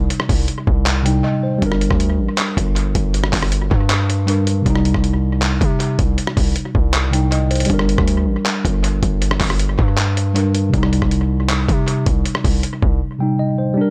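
A worn, slightly out-of-tune tine electric piano and a distorted 808-style bass open this dark, eerie trap excerpt together, setting a half-time hip hop feel at 158 BPM in 4/4. The electric piano, mellow and softened by a low-pass filter, carries the accompaniment across a range from C3 to G5, moving between Cm and Gm chords. Underneath, the bass is heavy and aggressive, a saturated sine tone with a noise layer, a fast attack and a decaying tail, sitting up front in the low register. A lo-fi sampler-style drum kit, pitched down, muffled and compressed, brings a thumpy kick, handclaps, hi-hat and rim click, all touched by analog delay. A brief silent gap at 1.2 seconds breaks the flow before the groove resumes. The echo-heavy digital ambience gives the piece a haunted, spacious sound, and the bass drops out at 13.0 seconds as the piano carries on alone to 13.9 seconds.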